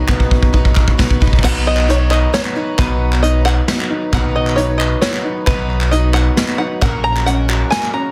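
Opening on a brushed drum fill that builds through the first 1.4 seconds, this uplifting, hopeful indie folk fragment in B major at 134 BPM in 3/4 layers a dark, mellow upright piano accompaniment and a very quiet, boxy upright piano playing arpeggios with slapback echo and plate reverb, a shimmering, octave-doubled twelve-string acoustic guitar and a reedy, breathing pedal harmonium sitting in the background with plate reverb, a woody, growly pizzicato upright bass up front, soft brush drums with a medium-tuned snare and a tight kick, and crisp, distant group handclaps, before a bright, twangy fingerpicked open-back banjo takes the melody at 1.4 seconds with its own slapback echo, in a dense, heavily limited modern master.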